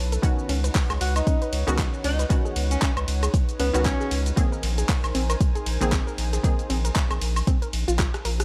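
Deep house with a smooth, late-night mood, where an up-front deep kick drives a dark, round analog bass that pumps under a background chorused pad, soft plucked arpeggios with analog delay and muted, detuned dub chord stabs moving from Db9sus4 to Bb9sus4, while a tape-warm kit of handclaps, hi-hat, ride, rim click, shaker and woodblock blends with a very quiet, gritty breakbeat layer, a breathy, distant alto saxophone plays a subtone jazz solo with scooped notes from 1.0 to 4.3 seconds, vinyl crackle sits over the dry mix, and a drum fill closes this cut from a longer piece at 8.0 seconds.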